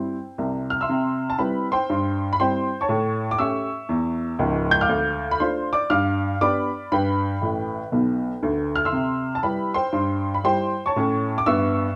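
Swinging in a buoyant 4/4, this exuberant, playful stride-jazz fragment, cut from a longer piece, features a woody, slightly detuned vintage upright piano playing solo up front in a moderate club reverb, moving through C, A7, Dm and G7 changes and breaking into a fill from 7.4 to 8.9 seconds.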